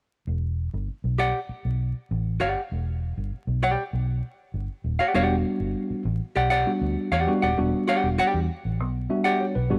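A round, punchy, foam-muted electric bass with tube saturation opens this sly funk excerpt in E minor at 99 BPM on an Em9 at 0.3 seconds, soon joined by a dark, clean, picked hollow-body archtop guitar in accompaniment, before a worn, slightly out-of-tune, mellow tine electric piano enters with stabs at 5.1 seconds and adds a fill at 8.8 seconds, all set in light reverb over vinyl crackle.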